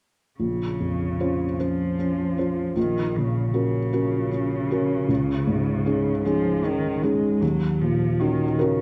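Longing and fragile, this short neoclassical fragment in a rubato 6/8 pairs a soft, felt-muted upright piano, intimate and thick with felt, with a veiled, con sordino solo cello that adds a bowed, vibrato second line. Both sit up front in a moderate recital hall reverb as the harmony moves from Bbmadd9 through Gb/Bb and Dbsus2 to Ebm7 across 0.4 to 8.8 seconds.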